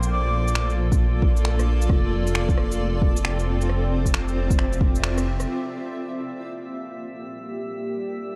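This wistful, nocturnal future garage fragment opens on a cloudy granular pad and a dark, rumbling detuned saw bass, both pumping under sidechain compression, while a faint glassy texture of drifting overtones hovers high above. A tape-toned kit of electronic shaker, finger snaps and rim click, recorded with a large-room ambience, sets a swung sixteenth-note groove from the start. A breathy, flute-like synth lead touches a single high note for a brief moment, coloured by analog chorus and delay. A deep electronic kick enters at 0.9 seconds and sits prominently in the mix as the harmony moves from Bbmaj7 to Fmaj7, with a band accent landing near the end of the first section. At 5.5 seconds the bass and percussion drop away, leaving the blurred, evolving pad to carry a Gm7 chord under a filter sweep while the shimmering texture lingers until the cut.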